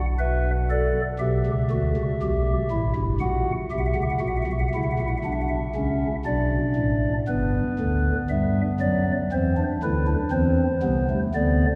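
A soft, hollow stopped-flute pipe organ with chiff sits up front, playing a stately yet lively baroque-style three-part fugue at 59 BPM in 4/4, ranging from G1 to F#5 and moving from a minor-key opening into G major at 7.3 seconds, all bathed in a long, wet cathedral reverb in this short fragment of a longer piece.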